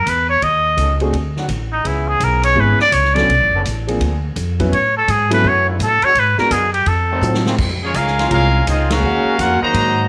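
A swinging, brassy slice of big band jazz opens with a nasal, breathy trumpet in a straight mute carrying the melody, its scooped notes and light vibrato sounding clear yet roomy. Beneath it, a woody pizzicato upright bass moves through the jazzy seventh-chord changes, while a punchy, natural drum kit with ride, hi-hat, snare, kick and crash swings from a big room. A warm trombone section holds soft-attack sustained chords in the background, and an intimate grand piano with audible action noise and deep lows adds accompaniment. After a drum fill at 7.2 seconds, a bright, tight trumpet section with slapback echo takes over the melody at 7.8 seconds, joined by a veiled, bucket-muted trombone section playing a second line. The full band hits an accent at 8.8 seconds before the passage cuts off, all under a light reverb.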